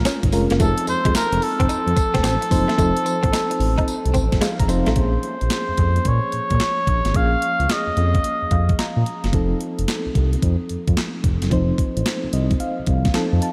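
A breathy, veiled cup-muted trumpet opens this confident, slick new jack swing excerpt over a mellow FM electric piano with tremolo and a dark, smooth synth bass, while a compressed clean electric guitar riff sits in the background until 4.9 seconds and an overdriven, thumpy 12-bit drum machine of handclaps, hi-hat, kick, snare and tambourine stays up front; the trumpet drops out at 9.1 seconds as the electric piano, bass and drums carry the dreamy, reverb-soaked mix onward, with a final electric piano fill running through to 13.5 seconds.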